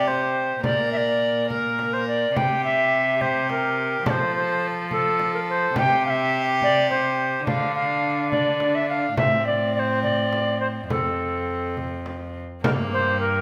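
A straight 6/8 pulse drives this rustic yet courtly Renaissance-style consort dance, cut from a longer piece. A pure, woody tenor recorder with a soft chiff carries the melody up front, while a close, gut-stringed violin plays a period-style second line and a reedy bowed cello supplies the bass. A small, bright frame drum struck with hard hands joins at 0.1 seconds and stops at 12.9 seconds, all set in a moderate recital-hall reverb.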